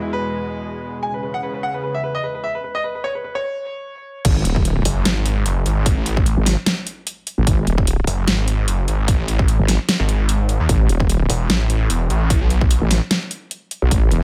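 Heavy wobble dubstep with a menacing, chaotic mood, cut from a longer piece and set in a swung, half-time groove. It opens on a brilliant grand piano melody carrying vintage sampler grit and tape echo, over a lush supersaw pad of detuned, sustained chords that pump against the sidechain until 2.6 seconds, when the pad stops and the piano carries the break alone. At 4.2 seconds the drop hits with a very quiet electronic impact, a punchy, tape-warm electronic kick and an up-front dubstep kit with a huge snare, metallic hats and crash cymbal in studio reverb. A heavy, dark wobble bass, saturated with chorus and overdrive, fills the low end through the drop. From 4.9 seconds a snarling, growling distorted saw bass joins, its unison detuned tone cut by a moving notch and pushed hard with overdrive and compression, all set in a digital ambience.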